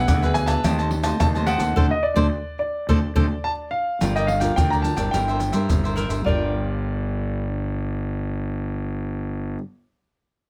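A straight 4/4 samba-and-choro pulse at 107 BPM in G minor carries this lively, nostalgic snippet, where a warm grand piano with audible action noise and long sustain sings the melody over crisp picked cavaquinho, a dark thumb-plucked nylon-string guitar in the background, and a round, punchy fuzz bass up front, while maracas, tight surdo, pandeiro and tamborim drive the groove until 6.4 seconds, a band accent lands from 1.8 to 4.0 seconds, and light reverb frames the whole.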